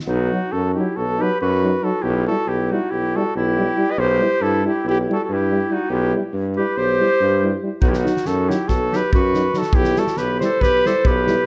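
A dark, reverberant scoring-stage sound frames this bittersweet, virtuosic cut from a Balkan brass band piece in 9/8: a mellow, up-front flugelhorn carries the melody with light vibrato over a distant clarinet second line and a clear, vintage tuba bass, French horn and euphonium sit in the background, and a loose acoustic drum kit with a punchy kick and fat snare sounds at 0.0 seconds before returning at 7.8 seconds.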